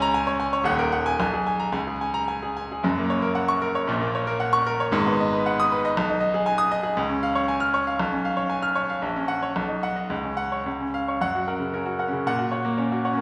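In a supple rubato two-beat pulse, this brilliant, heroic passage from a longer virtuoso classical piano study features a solo baby grand piano with a bright, polished, intimate tone, short sustain and audible action noise, ranging from deep bass to high treble across 13.2 seconds, moving through three short sections inside the wet reverb of a recital hall.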